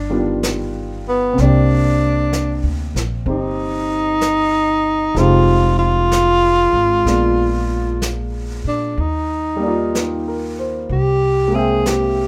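A breathy tenor saxophone carries the melody in this slow, late-night jazz ballad, sitting up front with a mellow subtone, light vibrato and scooped notes in a solo jazz style. Beneath it, a pizzicato upright bass on gut strings lays down a woody, dark, thumpy foundation, also placed close to the listener. A warm, natural grand piano enters at 0.1 seconds with accompaniment. A brushed drum kit joins at 0.4 seconds, its medium-tuned snare and hi-hat sitting quietly in an intimate small-room setting. The tempo is 63 BPM in 4/4 with swung eighth notes, and light reverb surrounds the ensemble. The harmony moves through rich extended chords, G7b13, Cm9, Fm9, Bb7b9, Ebmaj9 and C7b13, in this short passage cut from a longer piece.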